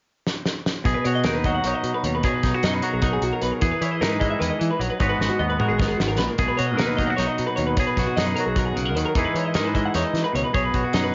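A straight 7/8 pulse at 304 BPM, counted in eighths, drives this bright, playful math rock and midwest emo piece in B major, cut from a longer work. A loose indie drum kit opens with a fill at 0.3 seconds and fills again at 5.2 seconds, its fat snare and tight kick sitting up front with a rolled-off top. A clean, picked twangy electric guitar carries the accompaniment up front, while a compressed twelve-string electric guitar spins arpeggios through tape echo over an overdriven, growling fingered bass, as the chords move between B6, Emaj7 and G#m7, all in a homespun cassette recording with light reverb and a muffled top end.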